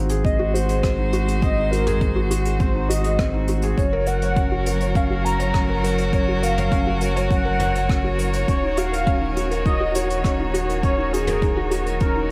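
A velvety, detuned synth lead carries the melody through chorus, cassette-tape colour and tape echo, above a felt-muted upright piano riff that sounds soft and intimate with its own tape echo, in this moving, melancholic piano-and-strings electronica at 102 BPM. A string quartet holds sustained bowed chords with vibrato and a smooth top, while a round sine sub bass sits up front with sidechain pumping, alongside a deep, layered electronic kick. Distant brushes on hi-hat, rim click and toms add a roomy touch as the harmony moves from Ab7 to Gb to Ebm7 in this short cut from a longer piece, all under light studio reverb.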